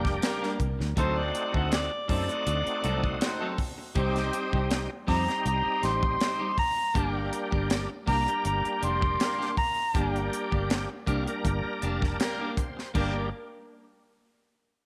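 Opening on a shouting, lightly overdriven tonewheel organ with key click and slow rotary speaker, a tight funk drum kit with a high-tuned snare, a round, foam-muted fingered bass and clean picked electric guitar stabs in the background, this smoky, soulful straight-eighth blues excerpt brings in brilliant, octave-doubled horn chords at 0.2 s before a mellow, vintage harmonica takes the lead up front at 1.0 s with scooped notes and light vibrato, and the organ adds a fill at 11.4 s, set in moderate plate reverb.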